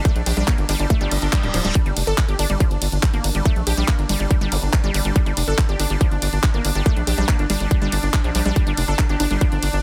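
A tight, up-front electronic kick drives a straight 4/4 pulse, layered with a garage drum kit of handclaps, hi-hat and ride cymbal, while a deep, dark analog bass sits low and heavy beneath this driving psychedelic trance clip. A punchy, warbling unison pluck with a filter sweep and tape echo carries the riff, and a bright, detuned gated texture holds sustained chords with chorus and reverb, both pumping against the kick. A reverse cymbal rises from 1.1 to 1.8 seconds and a brief electronic zap follows at 4.5 seconds, all within a dense, heavily limited, mostly dry mix.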